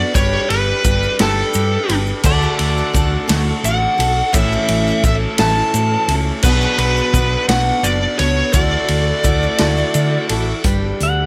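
A small room gives this brief excerpt of folk rock and heartland rock an intimate, open-road glow, moving in a slow, straight 6/8 at 57 BPM in D major over a G, D, A, B minor and Dadd9 progression. An up-front, smooth overdriven lead guitar carries the melody over a bright, jumbo steel-string acoustic guitar, a dark, round hollow-body bass, a punchy vintage drum kit with a rolled-off top, a grainy egg shaker in the background and a very quiet, lightly overdriven tonewheel organ with key click and slow rotary. A twangy pedal steel guitar with volume swells slips in for a short second line at 2.3 seconds and returns at 11.0 seconds.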